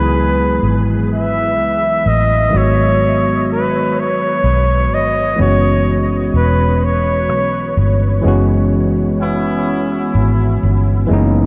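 A straight, slow six-eight pulse at 42 BPM carries this yearning, late-night R&B fragment through C#m7, G#m7 and F#7sus4. A round, foam-muted vintage electric bass sits beneath a barky, gritty overdriven tine electric piano, while an up-front flugelhorn with light vibrato and scooped notes sings a warm, jazz-style solo melody through analog delay until 7.9 seconds. A distant, roomy horn section then adds pop-style stabs with delay from 9.2 to 10.6 seconds, and the whole mix is soaked in a huge, dreamy reverb.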